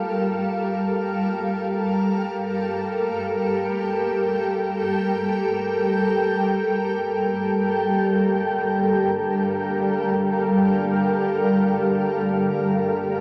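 A blurred, detuned granular cloud pad sits up front holding sustained chords that open on G minor seventh in free time, launching this serene, melancholic ambient piece cut from a longer work; a very quiet, ringing vibraphone with medium mallets adds arpeggios in a boxy small room from 8.0 s, and a nasal, tense, string-like drone with vibrato hums in the background from 8.9 s, all steeped in a huge reverb and the warbling pitch drift of worn cassette tape.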